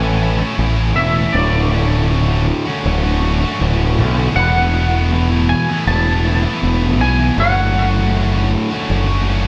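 A light reverb frames this soaring, cinematic post-rock excerpt, cut from a longer piece and moving at a straight 80 BPM in 4/4 in D lydian, with the tuning set at A4 = 441 Hz. Up front, a sludgy, bright distorted guitar drives the riff through overdrive, double-tracked and picked across a span from D2 to A4. Beneath it, a growling fingered electric bass, direct and amped with overdrive of its own, holds the low end between D1 and B1 and sits as one of the loudest parts. Above them, a twangy electric guitar carries the melody in a clean, fingered voice from D5 to A5, colored by analog chorus and digital delay. All three parts play throughout the 9.5 seconds as the harmony moves from Amaj7 to Dmaj7, Esus4 and Dmaj7/F#.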